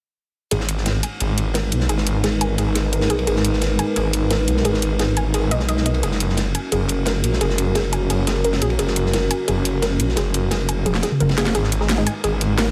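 Dark and tense, this excerpt of technical drum and bass runs in a straight 4/4 pulse, with most parts arriving together at 0.5 seconds. A snarling, distorted saw bass sits up front, growling low with a detuned, compressed edge and a moving notch, while an overdriven electronic drum kit cuts through with a cracking snare, bright hats and toms. Beneath it, a crunchy breakbeat kit adds gritty, saturated texture from a small room, its cymbals dark and its top rolled off. A deep, full-bodied analog pad with chorus enters at 1.3 seconds, holding moody sustained chords that move from G# minor with an added ninth to F# and back. In the background, a warbling, wave-folded unison pluck spins arpeggios through digital delay under a filter sweep, and after a drum fill a muted, mellow dub chord stab with phaser flickers briefly at 11.8 seconds. Light reverb and digital ambience frame the mix.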